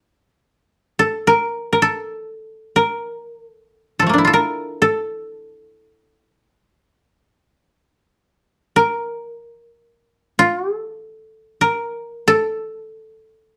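A dark, lightly reverberant production frames this solitary, austere fragment of Japanese traditional chamber music, in which a lone acoustic koto, played with fingerpicks and sounding dry, woody and up front, enters at 1.0 s and carries the piece by itself in its low-to-middle register until the cut at 13.6 s.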